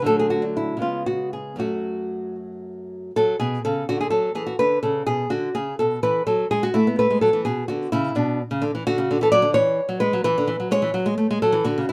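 Classical baroque-style dance in F# minor for solo nylon-string guitar, flowing and dance-like in a rubato 6/8 at 74-87 BPM, its small, up-front, fresh-stringed fingerpicked tone sitting in light reverb as the short excerpt moves from D through F#m, Bm and E7 before settling back on F#m at 10.9 seconds.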